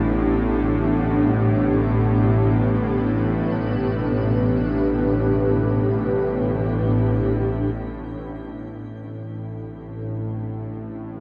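Bathed in a cavernous cathedral-like reverb with a five-second tail, this dark, ominous ambient excerpt in A minor drifts in free time. A cloudy granular pad holds sustained chords, detuned and mellow with a moving notch and shimmer reverb, while a tense, string-like bowed drone with vibrato and a ring-modulated edge sits up front beneath it. Both parts sound throughout, and at 7.7 seconds the harmony settles from an A9sus4 onto a plain A minor chord.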